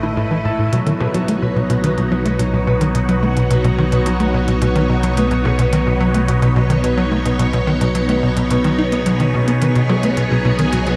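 Ambient, sequencer-driven space music at 108 BPM in a straight 4/4, this luminous, cosmic fragment is cut from a longer piece and moves from Asus2 to Badd9 at 0.7 s. A tight sequencer bass drives the riff with a punchy sawtooth and square-wave filter pluck, fast-attacking and decaying notes, a moving notch, lush chorus and delay, and it sits highest in the mix. Above it, a vintage phased string machine holds swirling, up-front sustained chords with slow attack and long release, its ensemble chorus and phaser giving a bright sheen. A fingerpicked concert harp rings out acoustic arpeggios through delay, while a round, sine-based sub bass anchors the low end with deep, mellow tone. Clicky electronic hi-hats and percussion blips, tape-warm and re-recorded in a small room, enter at 0.7 s with delay, and the whole mix floats in a wet cathedral reverb with a 4.8-second decay that evokes a vast, echoing space.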